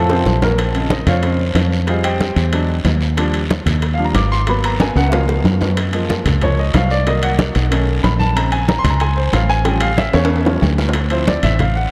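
A driving, straight four-beat pulse from congas, bongos, timbales and guiro powers this fiery Afro-Cuban jazz clip, cut from a longer piece, with drum fills at the start, around 4.8 seconds and again near 9.7 seconds. The congas ring softly, close and dry, while the high-tuned bongos sound tight and very quiet in a small room, the metal-shelled timbales ring out in a live space, and the raspy guiro scrapes along quietly. Up front, a fingered electric bass gives a bright, punchy, foam-muted low end. A baby grand piano with short sustain takes a solo from 0.6 seconds to the close, moving through lush extended minor ninth, major ninth and altered dominant chords. A lush hall reverb soaks the whole mix, lending the heated groove a dreamy glow.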